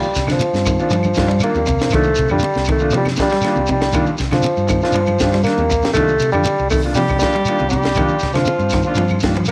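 Lightly reverberant, this afrobeat excerpt moves at 119 BPM in a straight 4/4, holding on a single Cm11 chord in C dorian with a defiant, driving mood. A mellow bassoon carries the melody up front, its light vibrato and classical phrasing giving it a vintage character. Underneath, a round, punchy hollow-body short-scale bass anchors the groove, and a compact cocktail drum kit joins at 0.2 seconds with dry, dark cymbals, a high-tuned snare and a punchy kick. Shekere, claves and congas add grainy, woody and ringing layers, the claves sitting in the background and the close, hard-hand congas kept very quiet. In the background, a dark, clean fingered electric guitar plays stabs while a twangy, slightly broken-up guitar picks arpeggios through spring reverb, and a reedy electric piano enters very quietly at 1.2 seconds. At 6.9 seconds a clear trumpet with scooped notes adds a short pop-style second line.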